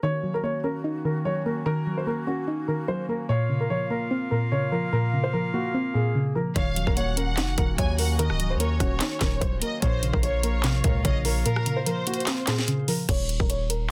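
A distorted 808-style bass hits hard and heavy from 6.6 seconds, sitting up front beside a trap drum kit with a hard-clipped kick, sharp snare, metallic hi-hats, handclaps, rim clicks and crash cymbal. This brooding, melancholic slice of trap-flavoured hip hop, cut from a longer piece, moves at 147 BPM in 4/4 with a half-time feel, in Eb dorian over a cycle of Ebm7 and Bbmadd9 that closes on Dbsus2. From the start, a dark, boxy concert grand piano carries the low-passed melody, while a soft, round, detuned pluck, chorused and filtered, supplies the accompaniment beneath a mellow woodwind section holding sustained chords with light vibrato. When the beat arrives, a lush studio violin section adds a smooth, bowed second line washed in tape echo. The kick drops out at 11.5 seconds. The mix is dry, dense and heavily limited in a modern style.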